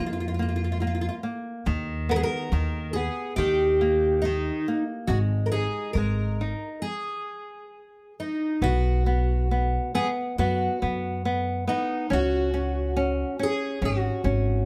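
Rubato and unhurried at 70 BPM in 4/4, this passionate, longing fado-style ballad in G# minor is carried by a fingerpicked twelve-string acoustic guitar whose shimmering, octave-doubled melody sits up front. A flamenco guitar with audible finger squeak supplies the accompaniment beneath it, while a woody pizzicato upright bass anchors the low end, all in light reverb. The ensemble halts from 6.8 to 8.6 seconds, then the music brightens into B major for the rest of this excerpt.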